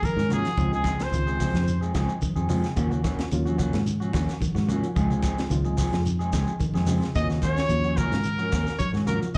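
A straight 4/4 afrobeat groove at 110 BPM drives this intense, funky excerpt in Eb dorian, cut from a longer piece and heard live through a club PA with small-room reverb. A tight funk kit with a high-tuned snare, tight kick and hi-hat sits dry and polished alongside hard-handed, thin-skinned congas in the background and a grainy, mellow shekere, while a round, foam-muted fingered bass sits up front. A very quiet, clean semi-hollow guitar plays arpeggios throughout, a twangy guitar at the edge of break-up adds stabs from 0.2 seconds, and a reedy electric piano comps in the background from 0.3 seconds, both with slapback echo. A bright, present trumpet carries the melody with slapback echo, shadowed by a raspy, gritty alto saxophone with vibrato and scooped notes, very quiet, as its second line. The horns play together from the start until 1.8 seconds and return at 7.2 seconds over the vamp alternating Ebm7 and Dbmaj7.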